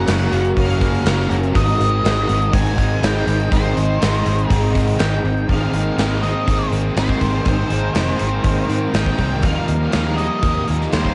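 Shoegaze and dream pop rock with a hazy, dreamy mood, this excerpt pairs a dark, fuzzy octave-fuzz lead guitar melody with an icy, crystalline glass pad holding chorused, reverb-soaked chords in the background. Underneath, a trio of overdriven guitars plays the riff: a crunchy one with analog chorus, a compressed one with reverse reverb, and a very quiet double-tracked semi-hollow guitar. A very quiet clean twelve-string electric guitar adds arpeggios, while a round, foam-muted vintage fingered bass and a punchy gated 80s drum kit in a bright stone room sit up front, the kit entering at 0.1 seconds, all softened by the lo-fi haze of a home cassette recording.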